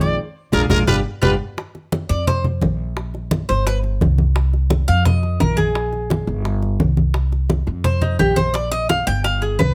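A straight 4/4 pulse at 172 BPM drives this danceable Cuban son and guajira excerpt: a raspy, growling trumpet with plate reverb and a fingerpicked flamenco guitar open over a drum fill and band accent and stop at 1.3 seconds, and then the metallic, double-strung Cuban tres takes a solo from 1.6 seconds over a woody, thumpy upright bass, thick-skinned, low-tuned congas and round bongos that joined at 0.5 seconds, captured with close, detailed microphones and light reverb.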